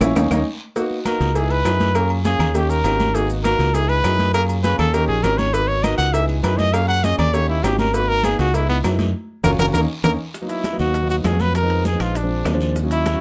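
Driving and sultry, this fragment of an Afro-Cuban jazz piece moves at 200 BPM in G# minor, opening on a band accent and drum fill before a clear, close-miked trumpet with light vibrato enters at 1.1 seconds for an up-front solo over a cycling minor progression. A growly, direct fingered electric bass sits prominently beneath a concert grand piano with deep bass and long sustain, which adds a short fill near 9.9 seconds. The percussion bed blends bright high-tuned congas, ringing timbales and agogo bells, tight bongos and cowbell, woody claves, a raspy band-limited guiro and grainy maracas under a light reverb, and a second accent and fill lead into a new section with a rootless G#m13 at 10.3 seconds.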